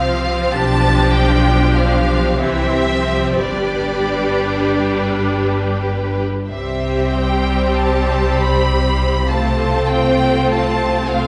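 Heard from further back on a wet scoring stage with a darkened top end, this lyrical, warm slow romantic movement for string orchestra in C major sways in a rubato 3/4 at 57-69 BPM, as a rich, smooth violin section sings the melody over a second violin line with a focused, lush tone, a clear viola accompaniment sitting up front, and a close cello and expressive double bass anchoring the bass, all bowed with vibrato across this 11.3-second cut from a longer piece.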